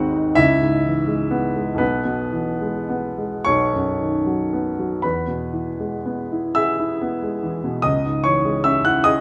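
A polished, present baby grand piano sits up front in this brief fragment of a nostalgic, serene romantic nocturne in E major, unfolding in a slow, rubato 6/8 at 34-50 BPM in dotted quarters, ranging from G#1 to F#6 through C#m7, E/B and B before settling on E and then C#m, all bathed in a moderate large-studio reverb.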